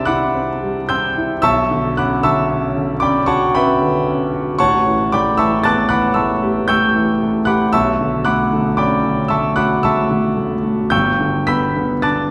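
In a rubato 3/4 at 56 BPM, this hazy, dreamy 12.3-second excerpt of impressionist classical solo piano drifts through Cadd9, Bmadd9, A9, Bm11 and Gmaj7 on an intimate, polished concert grand, tuned to A4 = 439 Hz, that spans G1 to B6 with deep bass, long sustain and audible action noise, while the piano sits up front and the recital hall's wet 1.6-second reverb lends the space the feel of being heard from further back.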